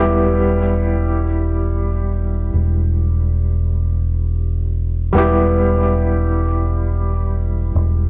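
A dark, round fingered dub bass sits up front on a low E while a soft, felt-muted upright piano with audible action noise, tremolo, 12-bit sampler grit and tape echo holds an intimate accompaniment over a single E minor chord in free time, lending this brooding, cinematic 8.1-second trip hop fragment a plate-reverb haze and the warbly pitch drift of worn cassette tape.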